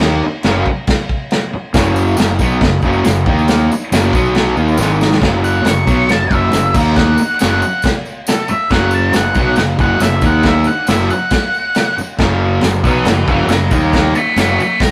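A double-tracked fuzz guitar riff, a growly overdriven fingered bass and a punchy, up-front vintage drum kit open this swaggering, rowdy garage rock excerpt at 138 BPM in F# major, with a jingly tambourine tucked in the background from 1.7 s and a drum fill at 4.8 s leading into a dark octave-fuzz lead guitar solo from 5.4 s, the whole captured as a rough, saturated rehearsal-room recording with light reverb.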